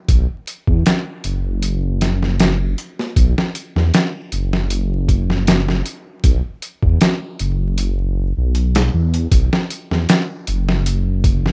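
Brooding and hypnotic, this short trip hop cut sits at 78 BPM in a straight 4/4, with a gritty, pitched-down sampler-style drum kit of thumpy kick, medium-tuned snare and hi-hat sitting up front with a compressed, tape-warm character. Also up front, a dark detuned sawtooth bass rumbles deep and sustained, its beating tone blending into a sine-like weight, with both parts running together from 0.1 to 11.5 s and the music moving into a new section at 9.3 s. The rough home-demo mix is wrapped in digital ambience and a layer of vinyl crackle.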